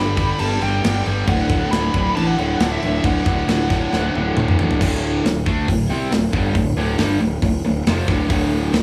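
A double-tracked, overdriven electric guitar drives this energetic, anthemic hard rock fragment in D mixolydian at 137 BPM, pushed up front alongside a punchy fuzz-toned fingered bass, with a tight metal drum kit and its bright cymbals sitting mid-forward, while a warm, bluesy distorted lead guitar with analog delay sings a melody until 4.3 s, a drum fill at 3.9 s leads into the second section, and light small-room reverb frames the whole.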